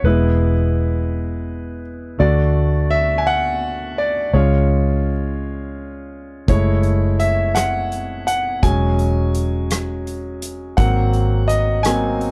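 A clear, natural grand piano carries this aching, melancholic six-eight pop ballad at 56 BPM, moving through chords from E and D to F#m7 and G#7 over a dark, round, foam-muted vintage electric bass, while a soft-mallet drum kit with a punchy kick and roomy hi-hat and rim clicks joins at 6.5 seconds in a dry fragment of a longer piece.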